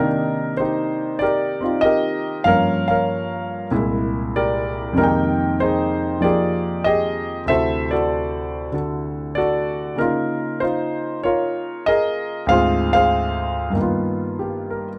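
A solo concert grand piano opens on a Cm9 chord, setting a late-night, smoky mood in C minor at 96 BPM in 4/4, with a swung eighth-note feel of 69%. This 15-second passage, cut from a longer piece, moves through rich jazz harmony: Gm7b5 and C7b13 lead to Fm11, then D9, Db69 and Dm7b5, before closing on a G7alt. The piano covers a span from C2 to G5, giving the low register a deep bass weight beneath the upper voicings. Its sound is intimate, natural and up front, with the action noise of the instrument clearly audible. A light reverb surrounds the piano, and the tuning sits at A4 = 442 Hz.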